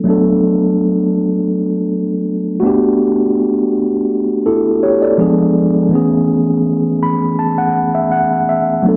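R&B in a soulful, smooth mood, this short excerpt features a mellow tine electric piano alone, clean and up front through its built-in speakers, moving through D6, Gmaj9, G#dim7 and Amaj9 with a gentle sixteenth-note swing and a fill from 6.6 to 8.8 seconds, all in a dry, close 1970s-style studio sound touched with digital ambience.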